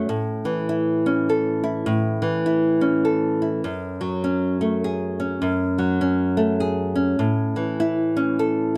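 Gentle and pastoral, this short folk passage, cut from a longer piece, features a solo nylon-string guitar fingerpicked in A major at 102 BPM in a lilting, swung 3/4. The small, warm-toned guitar sits up front, caught by close, detailed microphones with a touch of light reverb, moving from A to F#madd9 at 3.6 seconds and back to A at 7.2 seconds.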